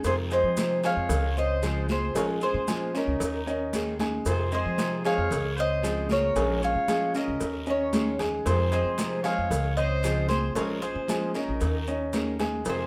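Opening on a woody, thumpy upright bass up front with fingerpicked nylon-string guitar, ringing high-tuned congas, a round low-tuned cowbell, raspy guiro, grainy maracas and a distant, roomy trumpet with light vibrato and scooped notes on a second line, this sultry 114 BPM Cuban son and guajira excerpt in F minor brings in a metallic, double-strung tres on the melody at 0.1 seconds and a grand piano's deep-bassed arpeggios at 0.3 seconds, over a repeating Fm7, Dbmaj9, Bbm7, Eb7sus4 progression in a moderate studio reverb.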